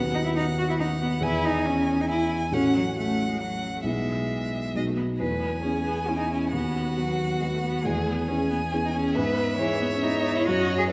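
Dramatic and stormy, this brisk classical-period piano quartet movement in E major at 137 BPM in 3/4 sets a smooth, rich solo violin melody with vibrato over a dark, mellow baby grand piano accompaniment placed up front with long sustain, while a focused cello adds a second line. A second, expressive violin with portamento joins at 5.2 seconds, and the whole ensemble sits in a wet concert hall reverb.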